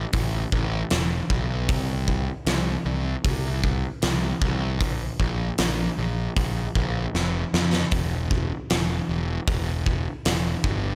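A fuzz-soaked electric bass opens this short cut from a longer quiet-loud alternative rock piece, picked and overdriven so its low notes growl from deep in the register. A huge acoustic drum kit joins almost at once, pairing a punchy kick and fat snare with hi-hat in a straight 4/4 feel. Both parts sit up front in the mix, the bass direct and amped while the kit carries the boom of a big room. The mood is angsty and brooding, held in a single section under light reverb. A drum fill runs from 7.1 to 7.9 seconds, and the kit stops at 10.8 seconds while the bass continues to 10.9 seconds.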